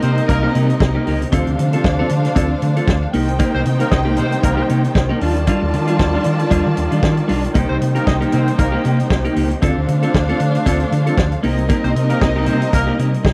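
A driving disco groove at 116 BPM in 4/4 with a light 16th-note swing sits on a fat-snared, tight-kicked soul drum kit up front, a round, dark hollow-body electric bass, and a metallic cowbell tucked in the background from 0.3 seconds, all in C dorian moving between Cm7, Dm7 and Ebmaj9. A clean, twangy picked electric guitar with spring reverb fills in the accompaniment, while punchy, vintage horn stabs cut in until 12.9 seconds. A woody, sul tasto string section carries a lush second line and a smooth, expressive string ensemble holds sustained chords with portamento, giving this dry, close 1970s-style studio cut a sultry glow.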